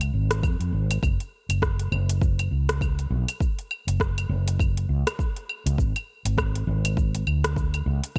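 Set in a digital ambience, this short excerpt of organic downtempo has a mystical, warm mood and a relaxed swing on the sixteenth notes. A fretless electric bass sits up front with a dark, round, amped tone, moving through a low register across the whole passage. A deep house drum kit supplies cabasa, claves, metallic hi-hats and rim clicks in a layered, produced, tape-saturated texture, sitting lower in the balance than the bass. An electronic kick drum enters at 0.4 seconds, deep and up front, with the same layered, tape-saturated character as the kit. Together the bass and percussion shape a groove that runs to about 8.2 seconds.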